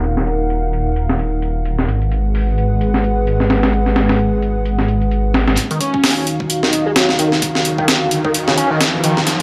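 A gritty, lightly reverberant breakbeat excerpt at 130 BPM with a swung, raw and energetic feel, where a sampler-style drum kit with a thumpy kick and high-tuned snare drives under a dark, chorused analog pad on D#madd9 and G#m7, a thick, menacing detuned saw bass holds the low end until 5.6 seconds, then a screaming, guitar-like overdriven lead with phaser and dub echo enters at 5.7 seconds for a build-up as a background riser comes in at 7.2 seconds toward a closing drum fill.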